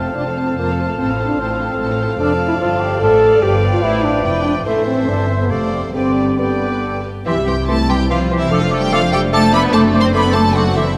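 A spirited, cheerful classical-period symphony orchestra movement at a quick 146 BPM in 3/4 with a rubato feel opens with a focused, vibrato-rich studio violin section carrying the melody over an F chord, while an airy flute, dark clarinet and smooth chamber violin section weave second lines in the background alongside a vintage-toned solo oboe, a close-miked mellow bassoon and very quiet viola section add accompaniment, a warm French horn section holds prominent sustained chords, and a rich cello section and distant, soft-attacked double basses anchor the bass, all steeped in a wet concert hall reverb as the harmony moves through Am and G to a new section on C at 7.3 seconds that closes on D7/F#.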